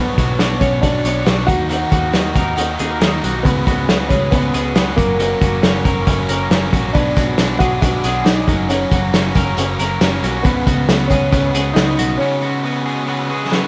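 A lush hall reverb gives this nostalgic, bright slice of jangly indie pop a big arena sound, with a woody, slightly detuned upright piano carrying the melody through slapback echo and digital delay. Around it, an overdriven semi-hollow guitar with slapback echo and a twangy, compressed twelve-string electric guitar playing arpeggios ring out over a round, foam-muted picked bass and an up-front, muffled vintage drum kit, while a jingly tambourine sits in the background from 6.9 to 12.1 seconds. The chords move through a Bmadd9 opening to F# and C#7sus4, and a break at 12.2 seconds closes on a drum fill at 13.5 seconds.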